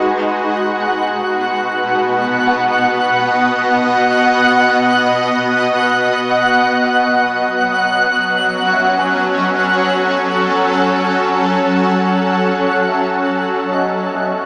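Luminous and peaceful, this ambient fragment at 72 BPM in B mixolydian floats on a bright, up-front shimmering pad of detuned sine chords with chorus and shimmer reverb, while a very quiet felt-muted upright piano plays mellow, boxy arpeggios with audible action noise and a twinkling FM granular texture sparkles high above until 13.3 seconds, all within a wet concert hall that sounds as if heard through a small speaker, moving from B to F#madd9 at 6.6 seconds and back.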